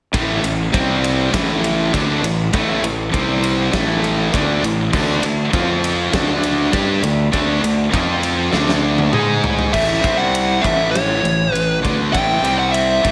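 A big arena sound wrapped in a lush hall reverb frames this energetic, anthemic hard rock excerpt at 100 BPM in 4/4, where a bright, high-gain guitar up front and a sludgy, overdriven guitar in the background both play a riff with slapback echo over power chords, supported by a growly, fuzz-driven fingered bass and a big acoustic drum kit with a fat snare and punchy kick. A drum fill at 8.5 seconds leads into a new section at 9.7 seconds, where a dark, smooth overdriven lead guitar enters up front with a picked melody in a high register.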